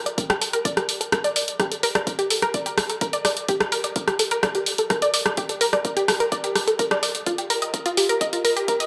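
A round, bright, detuned analog pluck opens this hypnotic, dramatic melodic techno excerpt in G minor at 127 BPM, spinning arpeggios between F4 and Eb5 through chorus, cassette-tape color, sidechain pumping and dub echo, as an up-front deep house kit of tape-colored hi-hat and rim click and a deep, layered, high-pass-filtered electronic kick join within the first fraction of a second, all bathed in a 2.1-second concert hall reverb while the passage builds throughout toward a drum fill from 7.3 seconds.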